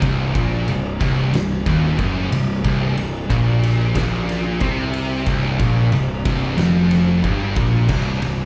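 Stoner and doom metal at 91 BPM in C minor, ominous and heavy, built on a single C minor chord through this short cut from a longer piece that runs about 8.5 seconds. A bright, double-tracked high-gain guitar with slapback echo riffs alongside two thick fuzz guitars sitting in the background, one warm and one dark, while an up-front, growly fuzz bass with overdrive digs into the low end. An oversized low-tuned acoustic drum kit with a boomy kick, fat snare, dark crash and ride cymbals and a pumping stone-room sound drives it all, heard as a live gig through the venue's PA with club reverb.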